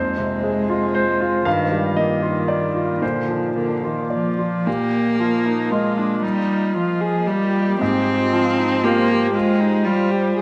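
Fragile and reflective, this neoclassical passage for piano and strings unfolds in a rubato triple metre, cut from a longer piece. A brilliant, polished concert grand with deep bass and long sustain sits up front beside a rich, bowed solo cello carrying the second line with vibrato, while a glassy FM pad with ensemble chorus holds ethereal, slow-blooming chords in the background. A single bowed viola, focused and smooth-topped with vibrato, joins at 4.7 s as the music shifts into a new section, the ensemble bathed in a wet echo-chamber reverb.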